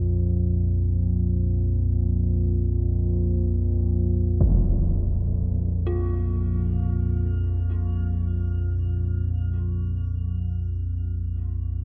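In free time, this desolate, unsettling fragment of dark ambient drone rests on a deep, ominous rumbling drone held up front with its own built-in reverb, struck by a huge, dark filtered impact at 4.4 seconds, before a faint, eerie, detuned FM synth bell with an inharmonic warble enters at 5.9 seconds to play arpeggios through chorus, phaser, diffuse delay and shimmer reverb as it fades out over a lightly reverberant room.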